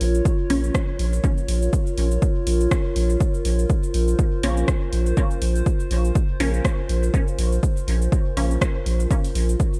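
Nocturnal and hypnotic, this dub techno passage, cut from a longer piece, moves at 122 BPM in 4/4 with a gentle swing on the sixteenths, resting on a single Bb minor chord throughout. A warbling, lo-fi pad holds sustained chords with a slow attack and long release, its nostalgic, mellow tone colored by chorus, phaser and its own reverb, and it breathes with sidechain pumping. Beneath it, a filtered dub chord stab plays short, muted yet bright plucks from a detuned, wave-folded source, carried off by phaser and dub echo and also pumping with the sidechain. A round, dark analog bass sits up front on a deep Bb1, sustained with a fast attack and ducking in time with the sidechain. The electronic kick drum enters at 0.3 s, punchy and overdriven, while a deep house kit adds cabasa, hi-hat and rim click with a layer of overdrive of its own. Light digital ambience surrounds the whole mix.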